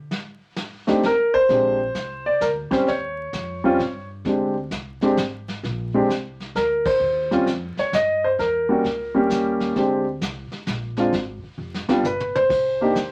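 A warm, up-front grand piano carries the melody in this relaxed jazz piano trio excerpt in a swung 3/4, its audible action noise sitting over brushed vintage drums with a punchy kick and rolled-off top, a woody, thumpy pizzicato upright bass entering at 1.5 seconds, a band accent at 6.8 seconds and a drum fill from 11.6 to 12.5 seconds, all wrapped in vinyl crackle and modest studio ambience.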